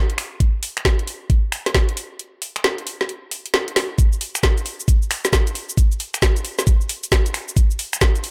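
A lightly reverberant, echo-heavy mix carries this late-night, moody UK garage fragment at 134 BPM in 4/4 with a 63% swing on the sixteenths, where a knocking, layered electronic kick drum joins an up-front garage drum kit of cabasa, finger snaps, metallic hats and a woody snare, both re-recorded in a small room, as a break from 2.2 seconds gives way to a drum fill at 3.8 seconds and a drop at 4.0 seconds.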